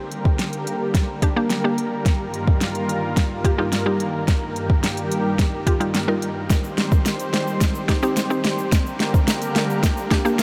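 Confident and driving, this dance-pop excerpt moves at 108 BPM in a straight 4/4, cut from a longer piece and built as one long build-up with a drum fill running throughout. A lush, thick sawtooth pad opens at the start with detuned unison voices, a warbling vintage chorus and a slow attack, holding sustained chords up front while sidechain pumping makes it breathe with the beat. The electronic R&B kit sits forward too, pairing a soft kick and fat snare with smooth hats, all given an overdriven edge. From 1.2 seconds a woody, round FM pluck with a fast attack and short decay adds mallet-like accompaniment in the background, also chorused and pumping. A grainy, bright acoustic shaker joins at 6.5 seconds, close and dry behind the other parts, as the harmony moves from Gm through Ebadd9/G to Cm and back to Gm. The whole mix is dreamy and soaked in a huge ambient reverb.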